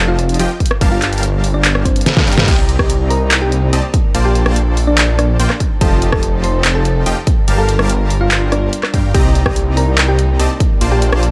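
A thick, saturated detuned saw bass sits up front in this lush, bittersweet future bass passage, cut from a longer piece, its sustained sawtooth tone pumping against the sidechain beneath a half-time groove. A round, tine-like synth pluck in the manner of a thumb piano carries the melody with a gentle, dark, full-bodied tone, softened by chorus and trailed by a digital delay. A punchy, bright supersaw stab plays a riff with a filter sweep, also breathing with sidechain pumping. A dubstep kit with a deep snare, handclaps, hi-hat, rim click and crash comes in at 0.2 seconds, joined from 0.6 seconds by the electronic kick drum, punchy and up front, both re-recorded in a large room, and a short drum fill leads into the second drop at 2.5 seconds. From there a very quiet studio string section enters with soft, floating bowed chords played sul tasto, while the harmony moves through seventh chords such as Gm7, Cm7 and Bbmaj7 in a digital ambience.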